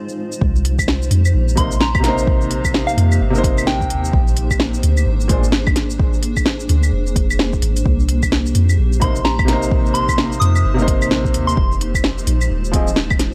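Future garage in C minor at 129 BPM with a swung 16th-note feel, this melancholic, wistful fragment of a longer piece moves through Cm7, Bb9 and Fm7 over a deep, round 808-style bass and an overdriven electronic kick, while an up-front kit of woody snare, smooth hats, claves and shaker pushes the groove. A blurred, evolving granular cloud pad sustains chords throughout, and a felt-muted upright piano with audible action noise adds intimate, pumping accompaniment with dub echo, dropping out after 5.4 seconds and returning at 9.0. A pure FM synth bell, coloured by chorus, phaser and delay, sings the melody in two brief phrases, with vinyl crackle over a dry sound.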